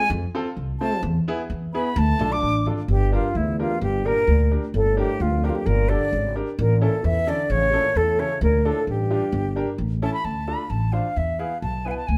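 Recorded live by a band in one stone room with moderate reverb, this festive, bittersweet klezmer piece in 2/4 is cut from a longer work and puts a pure, vibrato-rich concert flute up front with an expressive, soft-attacked melody. Just as close, a pizzicato upright bass with steel strings sounds woody and growly, while a bright, polished upright piano supplies brilliant accompaniment. In the background, a mellow, raspy trombone plays a jazz-style second line with scooped, growling notes until it drops out at 9.8 seconds.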